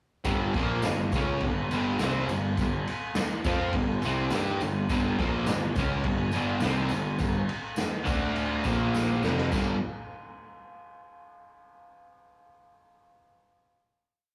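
A straight 4/4 garage stomp groove at 104 BPM drives this short, rowdy, swaggering garage rock piece, with a punchy kick, medium-tuned snare, crash and ride from a saturated, gritty drum kit up front, and a jingly tambourine tucked in the background. A double-tracked, compressed fuzz guitar hammers out a power-chord riff from G5 through D5, Bb5 and F5, while a growly, overdriven picked electric bass drives eighth notes that double the riff. A drum fill at 8.9 s leads into a final G5 chord ringing out from 9.5 s, all captured with the rough tube-saturated feel of a small rehearsal room.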